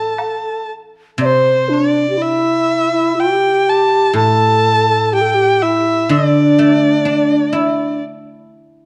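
A rich, bowed erhu carries the wistful, tender melody up front with vibrato and portamento in this rubato fragment of Chinese traditional chamber music, joined by an airy, reedy bamboo xiao on a second line and a silvery, ringing guzheng played with fingerpicks that sounds on alone after the other two stop at 8.0 seconds, the whole set in a moderate recital hall reverb with a dark, warm production.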